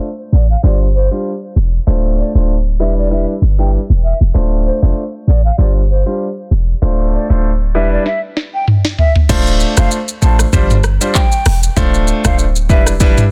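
A dense, heavily limited modern mix sits in digital ambience, with a low-pass filter sweep shaping the sound through the first 9.3 seconds of this section cut from a longer piece. It's a smooth, sultry afrobeats groove with a gentle sixteenth-note swing, built on a clear concert grand piano whose intimate, polished chords carry long sustain and audible action noise while cycling through Dm7, G7sus4 and Em7. A mellow, hollow jazz flute floats the melody above it, its airy, tongued straight tone trailed by digital delay. Underneath, a clean 808-style bass sits up front with a boomy, sine-like tone, fast attack and dark decay. The afro-pop drum kit arrives at 8.1 seconds with a fill, bringing toms, a deep kick, a sharp soft-clipped snare, metallic hats, handclaps, rim clicks, shaker and crash. That electronic, produced kit then drives the closing section alongside the piano, flute and bass.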